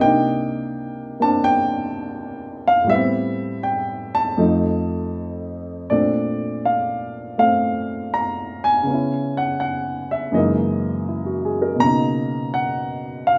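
Swinging and warm, this brief solo jazz fragment features a natural, up-front baby grand piano played with loose rubato swing between F2 and Bb5, its harmony moving through Cm9, Am9 and F7 before a new passage at 5.9 s turns to Bbmaj9, Dbm7, Gb13 and Bmaj9, the piano bathed in a moderate large-studio reverb.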